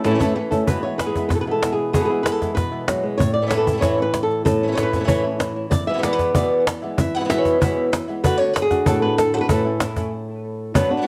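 A fingerpicked flamenco guitar carries the melody up front with cassette-tape grit and an analog delay, while a second woody guitar with old strings plays chord stabs over A, E and D, and a snappy, close cajon played with soft hands opens with a fill and joins a stop at 10.1 seconds, giving this fiery, festive flamenco excerpt in A major at 191 BPM a lively home-cassette sound in a reverberant room.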